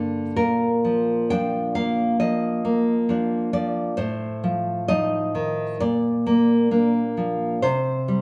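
A fingerpicked nylon-string guitar sits up front with a full-bodied, deeply classical tone and audible finger squeak, ranging from G2 to G5 across this brief 8.2-second fragment of a longer romantic solo piece. The playing is wistful and passionate, moving with rubato around 66 BPM in 4/4 through Bb, F7/A, back to Bb and onto C5. A wet, large studio reverb of 1.4 seconds surrounds the live-in-the-room sound.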